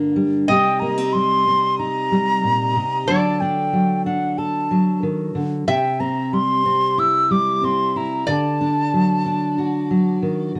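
A pure, crisp wooden flute carries the vibrato-tinged melody up front from 0.5 seconds in this intimate, haunting acoustic folk excerpt at 92 BPM, over a fingerpicked dreadnought steel-string guitar with audible finger squeak and a quieter, metallic, nasal resonator slide guitar played with fingerpicks as a second line, moving through Cm, D, C and D in a dark, warm production with light reverb.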